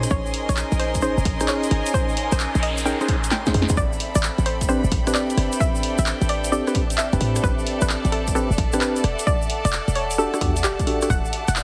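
A punchy, tight 808-style bass sits up front in this soulful, skippy two-step UK garage excerpt at 131 BPM, joined by a dry electronic kick and an analog drum machine of handclaps, hi-hat, rim click and snare carrying studio reverb, with a grainy tube shaker, a background noise sweep from about 2.2 to 3.8 seconds, and a drum fill around 3.3 to 3.8 seconds. A dark, wave-folded organ stab and a nasal, bouncy square pluck melody, both with chorus and dub echo, ride over sustained violin chords and a reedy, gut-string string texture that pump under sidechain compression. The chords move from Bbm11 to Am11 to Em11, and the whole mix carries a heavily compressed, radio-like sheen.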